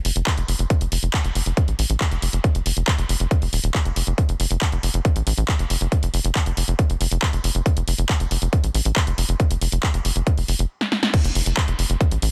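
Psychedelic and intense, this cut from a longer psychedelic trance piece in F major drives at 138 BPM in straight 4/4, with a tight, nasal sawtooth sequencer bass plucking between Eb1 and A1 under an up-front electronic kick and an overdriven techno kit of punchy snare, hi-hat, handclaps and crash, all dry and densely limited, until a drum fill from 10.8 seconds and a band accent at 11.0 seconds tip it into a drop at 11.1 seconds.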